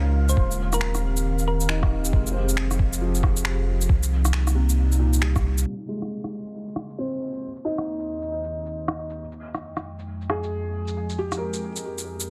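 A swung sixteenth-note groove in 4/4 drives this wistful, rainy future garage fragment, cut from a longer piece, with a thumpy, muffled, pitched-down kick drum and a layer of electronic shaker, rim click and finger snaps. A round, tine-like thumb-piano-style synth pluck with chorus and tape echo sketches a brief melody that stops at 2.1 seconds. Throughout, a felt-muted upright piano, soft and boxy with audible action noise, plays accompaniment through dub echo and sidechain pumping, beside a warbling, nostalgic tape-like pad whose dark, detuned sustained chords also pump. A deep, round sine sub bass sits up front under the kick, and a faint flickering, grainy granular texture hovers in the background, both dropping away near 5.7 seconds. A filter sweep moves over the piano in the first half and then over the pad in the second, all within a dry, dense, heavily limited and low-pass filtered mix.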